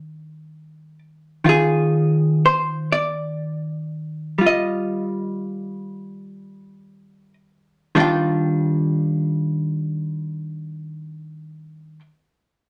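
A wet studio reverb gives this brief, tender fragment of a jazz ballad a soft halo around a solo archtop guitar. The electric hollow-body tone is dark, clean, picked and compressed, placed up front as it opens on an Ebmaj9 chord in Eb major and ranges from Eb3 to G5 over a swung 4/4 at 30-47 BPM. In a romantic mood, the tempo slows through the first 8.0 seconds before a new passage begins, and the guitar plays until 12.0 seconds.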